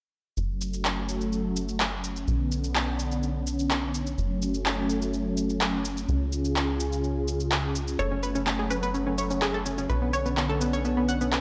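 Progressive house at 126 BPM in F# harmonic minor, this dreamy, bittersweet passage cut from a longer piece moves through F#m, Bmadd9 and C# with a dark, warm production and light reverb. From 0.4 seconds a detuned, evolving supersaw swell holds sustained chords up front, its low-pass filter sweeping across the whole passage. Beneath it, a tight, punchy sequencer bass drives with a saturated, wave-folded edge, while an overdriven electronic shaker and handclaps sit up front with the ambience of a large room. At 8.0 seconds an analog pluck enters with round, chorused arpeggios and dub echo, and a lush unison pluck carries a short melody in the background through dub echo until 11.0 seconds.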